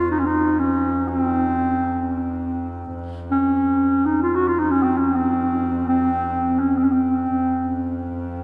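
In free time, this short excerpt from a longer Turkish makam ensemble piece drifts with a soulful, hypnotic mood. A warm clarinet carries the melody in a classical style, playing solo and up front, with an analog delay trailing its line as it moves between C4 and Gb4 until about 8.1 seconds. Beneath it, a single bowed double bass holds a drone on F2 through 8.4 seconds, its tone rich, nasal and smooth, with vibrato and an even, close presence set low in the balance. The tuning sits at A4 = 436 Hz. A cathedral reverb with a 5.5-second decay soaks the mix, giving the whole passage a dreamy, suspended air.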